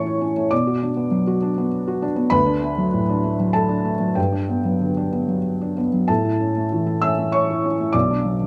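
Hopeful and peaceful, this brief neoclassical minimalist excerpt in D major sets a solo felt-muted upright piano, intimate and mellow with audible action noise, up front in light reverb, drifting rubato in 3/4 around 97 BPM through chords moving from A and Bm to D and Gmaj7 across its 8.5 seconds.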